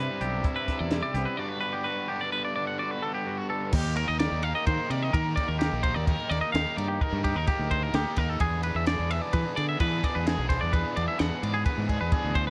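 Set in a lopsided but steady 5/4, this math rock and midwest emo fragment, cut from a longer piece, feels bright and intricate. A compact cocktail drum kit joins at 0.2 seconds, with a dark, smooth tone, a high-tuned snare, a punchy kick and a rolled-off top across its crash, hi-hat, ride, kick and snare. A twangy, clean electric guitar sits up front with a subtle chorus, playing accompaniment over Cmaj9 and Gmaj7 before dropping out at 3.7 seconds, while a second twangy guitar spins picked arpeggios high in the background. A double-tracked overdriven guitar drives a riff, and an overdriven, growling fingered bass pushes up front with a direct-and-amped edge. From 3.7 seconds the harmony moves to Ebmaj7 and then E7 at 8.4 seconds, all wrapped in light reverb and a worn cassette-tape sound with warbly pitch drift.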